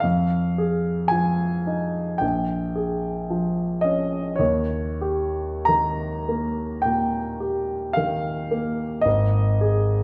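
Nostalgic and dreamy, this romantic classical nocturne excerpt features a solo grand piano, warm, polished and up front, drifting in rubato around 54 BPM through Fm7, Bbm7 and Eb7 before settling on Ab5 at 9.1 seconds, its range stretching from Ab1 to Bb5 inside the wet bloom of a recital hall.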